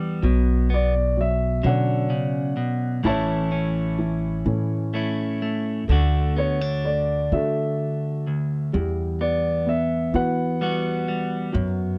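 Acoustic folk-pop ballad, nostalgic and hopeful, moving slowly in 6/8 at 43 beats per minute with a straight feel, cut from a longer piece. A clean, picked electric guitar sits up front with accompaniment throughout, alongside a felt-muted upright piano whose soft, mellow arpeggios add an intimate layer beneath. An upright bass played pizzicato on gut strings gives a woody, thumpy low end across the whole passage. A concert grand piano carries the melody from 0.7 to 11.5 seconds, open and up front with long sustain and a deep bass resonance. The harmony moves through Bmadd9, A, D and Emadd9, and the dry, close sound of a small room evokes a 1970s studio recording.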